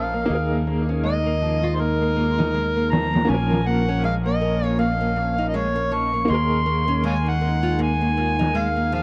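A swung 16th-note groove at 80 BPM in 4/4 carries this hypnotic, melancholic trip hop excerpt, with a gritty, pitched-down sampler-style kit of hi-hat and snare entering at 0.3 s and sitting in the background, while a bright, growly fingered electric bass stays up front over chords moving from Ebsus4 to Bbm and back. Out front, an amplified, overdriven harmonica plays the jazz-style lead with light vibrato, tongue slaps and scooped notes, roughened by vintage 12-bit sampler grit and tape echo. Beneath it, a woody, slightly detuned upright piano with tremolo, a small fingerpicked nylon-string guitar playing filtered arpeggios, and a deep, moody, warbling ambient pad under a continuous filter sweep fill out an echo-heavy mix with light reverb.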